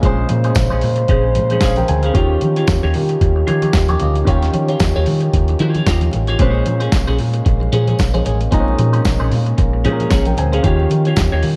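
A swung sixteenth-note groove in 4/4 drives this danceable disco passage, built on a gritty, overdriven sampler-style drum kit with a thumpy kick and a round, punchy fingered electric bass sitting up front. A twangy clean electric guitar with phaser, a grand piano and a tight, mellow French horn section fill out the harmony over Bbm9 and Eb9 chords, while ringing congas and a jingly tambourine, which enters at 0.5 seconds, stay very quiet in the background. The dark production adds light reverb and a small room ambience.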